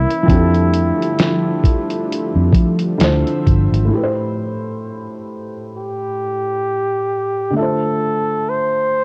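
A mellow flugelhorn carries the melody in a jazz style, its light vibrato sitting present and up front, softened by a low-pass filter and cassette tape. This hazy, reflective lo-fi hip hop excerpt moves with a gentle swing in 4/4, shaded by chords drifting from F69 to Dm9, then Am7 and Dm7. A felt-muted upright piano gives intimate, thick-felt accompaniment throughout, while a lush unison pad of detuned sawtooth and square waves adds warbling, chorused sustained chords. Beneath them, a foam-muted electric bass with transformer saturation lays down a round, punchy low end, and a sampler-style drum kit, pitched down and muffled, provides a thumpy kick, medium-tuned snare and hi-hat from 0.1 seconds. At 3.9 seconds the bass, pad and drums drop out, leaving the flugelhorn and piano alone until the cut at 9.0 seconds, all in a dry, home-taped room.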